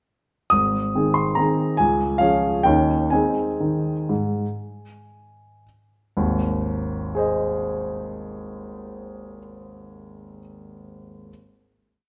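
In a lilting 3/4 waltz time with rubato phrasing between 107 and 150 BPM, this short classical piano waltz in Ab major unfolds gracefully and playfully, its tempo slowing from 2.4 s before settling on a final chord at 6.2 s. A solo grand piano with a warm, polished, present tone sits up front, spanning Ab1 to Eb6 as it carries a single-line melody over a waltz bass that moves through Ab, Db and Eb7 back to Ab. A moderate recital hall reverb lends the piece a gentle sense of space.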